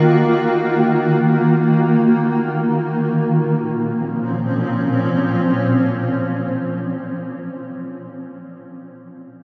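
Drenched in a huge, echoing reverb, this short ambient excerpt sounds as though it hangs in a vast space, reflective and melancholic in mood. A single granular cloud pad sits up front from 0.0 to 7.1 s, holding sustained chords that bloom slowly and fade with a long release. Its tone is cloudy, blurred and detuned, with its own built-in reverb, shifting from Ebm to Bbm at 3.1 s.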